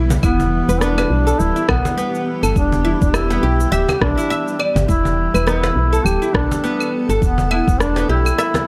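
A duduk carries the melody, full of vibrato and scooped notes in a folk style, sounding distant and roomy yet placed up front, with a digital delay trailing its lines. This is a meditative, earthy piece of organic downtempo at 103 BPM in 4/4, with a swung 16th-note feel, resting on E minor throughout. Beneath the duduk, a plectrum-plucked fretless oud with double strings plays arpeggios through tape echo, while a soft, round FM bass with a dark, woody tone and a fast, decaying attack sits up front. A cajon struck with hard hands, with faint snares and a vintage, band-limited sound, joins tape-warm electronic cabasa, claves, rim click and a deep kick, all of these electronic drums re-recorded in a large room. A bright, cloudy granular pad holds sustained chords with a slow attack and long release, blurred and detuned, pumping against a sidechain inside its own built-in reverb. A drum fill lands at 8.4 seconds just before the excerpt ends, and the recording sits in light digital ambience.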